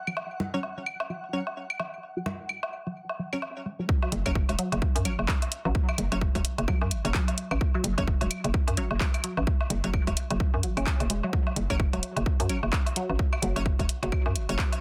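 A swung 4/4 groove at 129 BPM drives this hypnotic, clinical minimal techno cut in F# minor, taken from a longer piece. It opens with a flickering, grainy texture sustained on a high F#, alongside a squelchy, resonant blip pluck riff with phaser and dub echo, delayed claves, woodblock and congas, and a crisp, detuned wavetable chord stab. At 3.9 seconds the drop arrives as the grainy texture stops and a punchy, overdriven electronic kick lands up front, followed at 4.1 seconds by a hollow, bouncy FM bass with sidechain pumping and an overdriven house kit of handclaps and hi-hat, its hats darkened by a low-pass filter. The pluck riff and the chord stab keep cycling above the bass, while the percussion parts carry the roomy sound of a large space. The dense, heavily limited mix stays mostly dry, keeping the kick and bass close and forceful.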